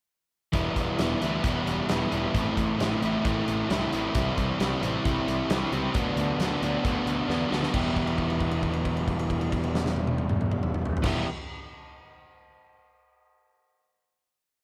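A swaggering, driving classic rock piece in E minor at 134 BPM kicks off at 0.5 seconds with an up-front crunchy overdriven guitar pounding eighth-note barre chords, a background semi-hollow guitar adding overdriven open chords, a growly, fuzzed picked bass, and a big-room rock drum kit with a punchy kick, fat snare and dark, rolled-off top, moving through Em, Am, C and Bm/D before a drum fill at 7.3 seconds leads into a held final Em chord ringing out in light studio reverb until 11.3 seconds.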